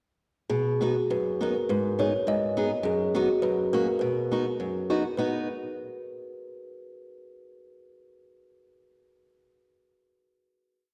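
A thumb-plucked kalimba leads this short, jolly alpine folk piece in a festive dance-band spirit, its solid-board tone woody, ringing and smooth as it sits up front. Its melody is built from a compact motif shaped into period phrases, moving within a modest upper range. Beside it, a picked old ladder-braced acoustic guitar, also up front, supplies off-beat triad chords with a boxy character and the dull bite of old strings. Both instruments enter together at 0.5 seconds, in a gently swung 2/4 with a rubato ease, and a single section gives way to a closing chord at 5.2 seconds. A generous scoring-stage reverb and a dark, warm production wrap the pair in a soft, lingering glow.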